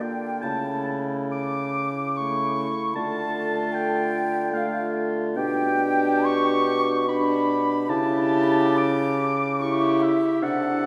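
This classical slow movement for wind quintet is a serene, tender fragment in D minor, cut from a longer piece and moving at 72 BPM in 3/4 with uneven beats and a flexible, rubato feel. An airy, hollow concert flute carries the melody from a softly attacked, background position, while a warm oboe with light vibrato sings the second line in the same upper register. Beneath them, a clear, somewhat distant clarinet and a close-miked, mellow French horn supply the accompaniment, and a punchy bassoon sits up front with the bass line. All five instruments play together throughout the 10.9 seconds, following a harmonic path from A/C# through Dm and G/B to A7/C#. A wet concert hall reverb places the ensemble further back in the room, lending the music a spacious glow.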